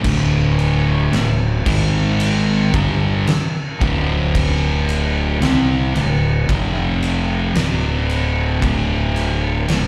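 A thick, double-tracked fuzz guitar dominates this stoner and doom metal excerpt, its picked, distorted riff grinding through power chords on D, G#, and F before settling back on D. Beneath it, a fingered electric bass growls with overdriven, bright punch, its tone direct and amped. An oversized, low-tuned acoustic drum kit fills a big, pumping room with a punchy kick, a fat snare and dark crash cymbals, all saturated and gritty. The mood is hypnotic and ominous, the slow, straight pulse carrying heavy weight. Captured live through a club PA with light reverb, the sound keeps all three parts up front across the full 9.9 seconds.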